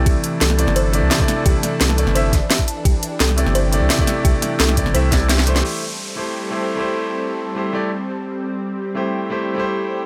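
A straight liquid drum and bass groove carries this melancholic, lush fragment, cut from a longer piece and opening straight on a drop. Crisp, filtered hi-hats, ride cymbal and a cracking snare sit up front, layered over a knocking electronic kick, with both kits given the character of a small room. A saturated, deep triangle sub bass anchors the low end with a fast attack. Above it, a brilliant concert grand piano plays polished accompaniment with long sustain and digital delay, while a thick, detuned unison pad holds sustained chords that pump against the beat through chorus and phaser. A round, tine-like FM pluck plays gentle arpeggios in the background, coloured by cassette tape wear and dub echo. A drum fill arrives at 5.1 seconds, the kick drops out at 5.3 seconds, and from 5.6 seconds the beat and bass give way to an electronic downlifter beneath the lingering piano and pad, all set in light digital ambience.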